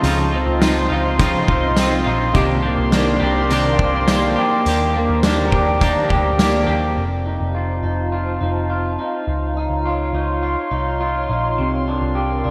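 Dream pop at 104 BPM in a straight 4/4, this blissful, dreamy piece sits in F mixolydian and drifts through lush major-nine and minor-nine chords, opening on Dbmaj9 and settling on Csus2. A warbling, detuned pad of sawtooth and triangle tones with a slow attack and long release holds sustained chords throughout, its lo-fi, nostalgic haze thickened by chorus and built-in reverb. Up front, a twangy, slightly broken-up electric guitar through a small old amp picks arpeggios bathed in lush chorus and delay, while a clean, hollow-bodied semi-hollow guitar adds accompaniment through harmonic tremolo and analog chorus until 7.0 seconds. A round, punchy, foam-muted picked bass anchors the low end, and an oversized, low-tuned kit with a boomy kick, gritty saturation and gated reverb drives hi-hat, snare and tambourine before dropping out at 6.5 seconds. A delicate, bell-like celesta lingers barely audible beneath it all, and the gleaming 1980s-style digital production wraps the mix in a moderate hall reverb.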